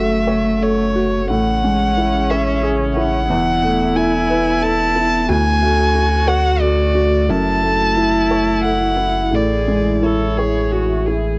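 A felt-muted upright piano, a bowed viola, a solo violin, a dark analog pad and a sine sub bass all sound together from the first moment of this melancholic, reflective neoclassical passage, cut from a longer piece. It moves in 3/4 with uneven, rubato beats, so the pulse breathes freely under the chords F#m7, Amaj7, Esus4 and Dmaj7 before returning to F#m7 and Amaj7. Up front, the single violin carries the melody in a warm, expressive voice with vibrato and portamento, while one viola supports it with a smooth, even tone. The piano's soft, intimate notes have a thin felt quality and short sustain, and alongside them the detuned pad sits in the background, moody with chorus and phaser, as the clean sub bass adds a deep, smooth floor. The dry, close 1970s-style studio sound carries light reverb, and the violin drops away at 11.1 seconds, just before the others finish at 11.4 seconds.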